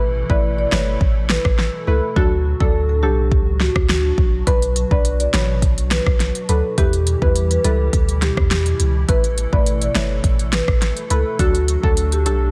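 A hollow, flute-like pad with a warbling ensemble chorus and sidechain pumping opens this sultry, hypnotic dancehall cut at 104 BPM, alongside a punchy sine sub bass with a pitch-drop attack. From 0.3 seconds, a deep house drum kit arrives up front, with a deep kick, fat snare, smooth hats and rim click, all roughened by vintage 12-bit sampler grit. Over a straight 4/4 feel, a woody marimba played with medium mallets carries the melody through a tape echo. A mellow, detuned chord stab with chorus and a filter sweep fills in the accompaniment. The harmony moves through Asus2, D, Bm and Em beneath a digital ambience and a dense, heavily limited modern master, in a piece cut from a longer work.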